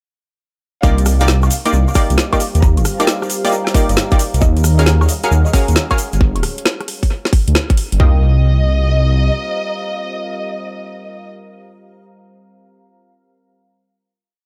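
In an echo-heavy digital ambience, this moody, skippy two-step UK garage piece in C minor at 134 BPM drops in at 0.8 seconds with a tight, up-front electronic kick and floor tom, a grainy egg shaker in the background, a rumbling detuned saw bass line, punchy chorused chord stabs moved in parallel through tape echo, and a close, bowed violin section repeating a riff; swung hats, rims, a woody snare and woodblock carrying analog delay join at 1.0 seconds, and a warbling vintage pad with sidechain pumping enters at 2.3 seconds and holds the final Cm7 chord from 8.0 seconds.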